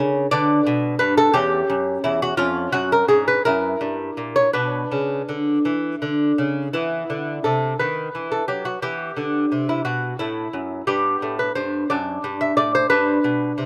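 Classical, baroque-style dance in a rubato 6/8 at 54-60 BPM, this solemn, introspective fragment of a longer piece features a solo lute, fingerpicked and placed up front, whose bright, delicate double nylon strings with some octave doubling carry a slapback echo in a dry outdoor setting, moving from B minor to E minor at 6.7 seconds.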